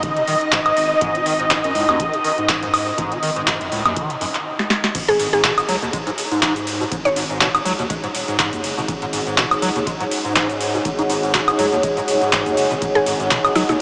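An overdriven analog drum machine sits up front in this raw, hypnotic acid house excerpt, its crisp snare, metallic hats, handclaps, toms, woodblock, shaker, ride and crash riding a swung 4/4 over a deep electronic kick set back in a large room and a thick, saturated sine sub bass that pumps to the beat. A squelchy, resonant liquid acid bass riff runs throughout, colored by phaser, tube saturation, analog chorus and tape echo, while a lush vintage string machine holds sustained chords until about 5 seconds, when a drum fill leads into the drop. From there a mallet-like FM pluck adds woody, round melody notes with chorus, 12-bit grit and tape echo, and a moody, dark pad with slow attack fills the second half, inside a dreamy mix drenched in huge reverb with a small-speaker sound.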